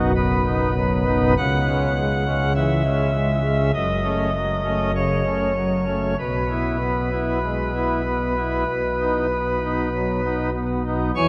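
A long, wet cathedral reverb surrounds this recording, its 5.2-second decay hanging in the air around every chord. This is a short classical fragment in chorale style, cut from a longer piece, with a majestic and reverent mood. A single pipe organ plays solo from 0.0 to 11.3 s on a cornet stop, its nasal romantic voicing placed up front and shimmering with tremulant. The slow pulse in 4/4 breathes freely with rubato, and the part spans from the deep F#1 up to C#6. The harmony moves from B through C#m, F#m and E/B before coming back to B.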